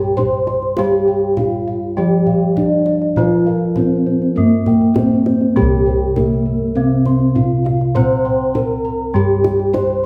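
Shimmering and ceremonial, this excerpt of Javanese gamelan in C slendro moves at a steady 100 BPM in 4/4, with an up-front, paired-tuned bronze metallophone struck with padded disc mallets carrying the mellow, airy melody over a second soft-toned metallophone accompaniment, round, beating bossed gongs and a bright, horn-mallet metallophone sharing ringing arpeggios, boxy bossed gongs holding the bass in the background, and a deep, close and dry kendang keeping time, all set in a reverberant recital-hall space.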